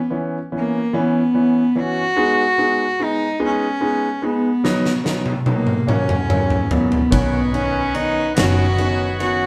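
Romantic and swaying, this six-eight pop ballad fragment opens with a rich, biting bowed cello carrying the melody over an intimate concert grand piano whose deep bass, long sustain and audible action noise sit up front. At 4.6 seconds a huge arena drum kit breaks in with a fill of punchy kick, fat snare, toms and ride cymbal, its big-room sound adding weight to the stone room's moderate reverb. At 7.1 seconds a clear, earthy bowed double bass with light vibrato and a thick, gritty overdriven tonewheel organ through a slow rotary speaker join as the chords settle on Badd9, giving the live-in-one-room band a fuller close.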